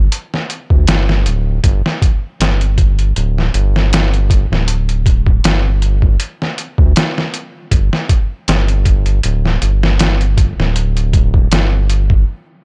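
A dry, close-up sound frames this brooding, cinematic trip hop excerpt at 79 BPM with a light swing, where a gritty, pitched-down, tape-warm sampler-style drum kit with a thumpy kick, medium-tuned snare and hi-hat sits up front beside a round, deep analog bass whose wave-folded, evolving tone carries tube saturation, before the groove halts at 12.3 seconds.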